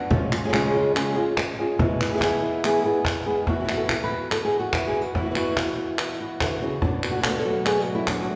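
At a straight 143 BPM in 4/4, this mournful, passionate flamenco excerpt sets an up-front, fingerpicked guitar melody with fresh strings against a second, bright guitar playing stabs in the background, a woody cajon struck with hard hands and faint snares, and crisp palmas hand claps, all carried by the wet reverb of a recital hall as the harmony moves from C# through E and Esus2 to Bm7, with a new section beginning at 3.5 seconds.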